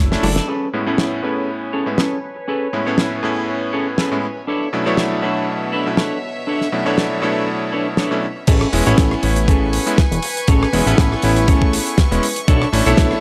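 A drum fill on a damped 70s kit opens this sunny, feel-good nu-disco excerpt, with a band accent at 0.4 seconds as the fat analog bass briefly sounds. A bright, clangy electric grand piano sits up front with sidechain pumping, a low-pass filter and analog delay. A picked semi-hollow guitar plays a clean riff through subtle chorus and delay, its filter sweeping alongside a soft, floating string section that holds sustained chords in the background. The acoustic kit, lightly swung, brings hi-hat, rim click, crash cymbal and a dry, fat snare in a small room. At 8.5 seconds the drop arrives, as a thumpy, sampler-style electronic kick sits forward and the detuned sawtooth bass returns with sidechain pumping, over harmony that alternates between major ninth and minor eleventh chords in a gritty hardware recording.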